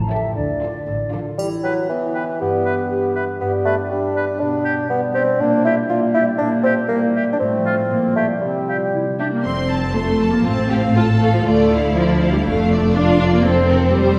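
A focused, up-front viola section drives this sneaky, mischievous cinematic cue at 119 BPM in 2/4, while a ringing, fingerpicked concert harp spins arpeggios throughout as the music moves from E minor to F major. After a brief opening of lush violins on melody and second line over rich cellos and double basses, with an airy flute already sounding in the background, the strings drop out at 1.4 s for a woodwind passage: the flute carries on, joined by a clear, close-miked oboe, a warm clarinet, a mellow bassoon up front and a short sparkle of triangle. The strings return around 9.4 s, with an expressive, distant second violin line full of portamento, and a wet scoring-stage reverb sets this playful, whimsical ensemble further back in the room.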